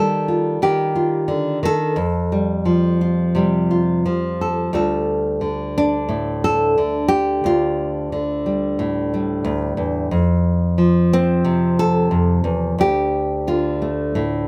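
Captured by close, detailed microphones in a small room with moderate reverb, this intimate, wistful folk passage, cut from a longer piece, features a solo nylon-string guitar, fingerpicked up front with a full-bodied, deep classical tone, drifting in rubato around 89 BPM in D minor from Ebadd9 and Fadd9 colors into Dm at 4.7 seconds before touching F and returning to Dm.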